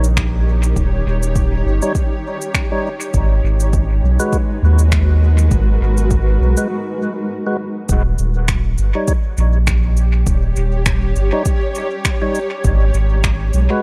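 Ambient dub at 101 BPM with a light 16th-note swing, hazy and deep, built on a round, up-front sub bass and a blurred, detuned granular pad that drifts over D#7 and G#m7 chords, while an overdriven electronic kick and small-room shaker and finger snaps with dub echo carry the groove, a fat, lightly overdriven tonewheel organ enters with chorus-vibrato stabs through a slow rotary speaker at 1.8 seconds, and a break arrives at 6.7 seconds in this dry, close-sounding cut from a longer piece.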